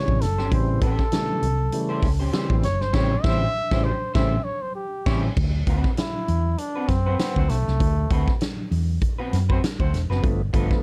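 A breathy, jazz-style trumpet solo opens this strutting funk excerpt over reedy, lightly overdriven organ stabs with key click and slow rotary speaker, joined almost at once by a round, punchy hollow-body bass with tube saturation, an up-front swinging big-band kit with dark cymbals, and a slightly broken-up picked guitar in lush chorus, while a tight, smooth-topped horn section with vibrato and octave doubling enters at 2.9 seconds for a band accent as the harmony moves from A7#9 to D13, the organ returning briefly on G9 near the close of this dry, warm production.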